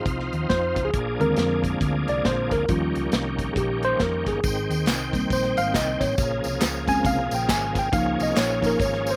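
Jubilant yet reverent, this short cut from an uptempo gospel piece moves at 137 BPM in 4/4 with a swung eighth-note feel. A worn, slightly out-of-tune tine electric piano carries the solo throughout, its mellow, clean tone touched by slapback echo, while a bright tonewheel organ holds sustained chords beneath it, shouting and lightly overdriven with key click, chorus vibrato and a slow rotary speaker. A round, punchy hollow-body electric bass sits low and dark, and a modern studio drum kit of hi-hat, kick and snare offers a smooth, rolled-off sound with a tight kick and medium-tuned snare. At 4.4 seconds, tambourine, maracas and group handclaps join, sounding distant, as if in a large room. The harmony travels from F7 through Bb7 and Eb7 to Abmaj7, Bbm7 and a closing Db6, all in a dry, close mix.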